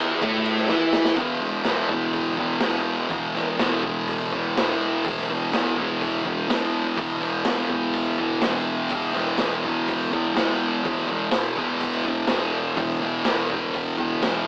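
A straight 4/4 pulse at 124 BPM drives this swaggering, raw garage rock excerpt, where a thick, double-tracked fuzz guitar sits up front with a picked riff spanning E2 to E4, settling on an E5 chord at 1.2 seconds. A gritty, saturated acoustic drum kit, with a punchy kick, medium-tuned snare, hi-hat and ride cymbal, enters at 0.2 seconds and plays a fill from 0.7 seconds, its pumping small-room sound and rolled-off top adding grime. The band sounds like it is playing live in one stone room with moderate reverb, filtered through an AM radio tone.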